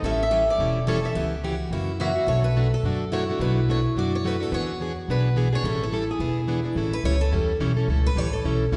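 Acoustic string swing in the jazz manouche style, swinging and charming at 214 BPM in A mixolydian, with a bright, boxy swing-style guitar carrying the melody until 6.6 s over a fresh-stringed steel-string guitar's second line, a dark plugged-in steel-string guitar up front on accompaniment and a woody, thumpy pizzicato upright bass on gut strings, before the steel-string guitar takes a short solo from 6.8 s as the harmony lands back on A7, the whole set in a wet concert-hall reverb with a soft top end.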